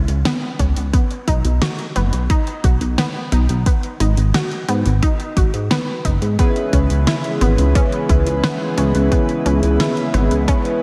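A straight 4/4 groove drives this nostalgic synthwave excerpt, built on a punchy, up-front electronic kick and a layered pop kit with a fat snare and hi-hat. Beneath it, a dark, glossy chorused synth bass carries sidechain pumping, while bright, detuned analog pluck arpeggios ring through chorus, delay and slapback echo. At 6.4 s a smooth analog pad enters with sustained, chorused chords roughened by vintage 12-bit sampler grit, joined by mellow, full-bodied polysynth stabs with a filter sweep, delay and slapback echo, all set in a lush hall reverb with a big arena sound as the chords move from C#m7 through B and G#m7 back to C#m7.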